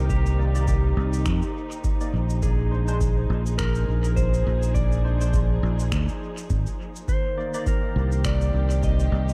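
A light reverb and gentle tape saturation give this hazy, spacious ambient dub fragment in C minor its soft glow, moving at 103 BPM in 4/4 with a lightly swung sixteenth feel as the harmony shifts from Cm9 to Bb9 at 2.4 seconds and back. A round, up-front fingered electric bass anchors the low end beneath a deep analog electronic kick, while overdriven electronic cabasa and finger snaps, re-recorded in a large room and sent through dub echo, sit faintly on top. A dark, lush studio string section sustains woody, bowed chords with vibrato, a barky tine electric piano adds bright, chorused stabs with dub echo from 0.4 to 7.6 seconds in the background, and a warm, clean lap steel carries the melody with slide, volume swells and dub echo.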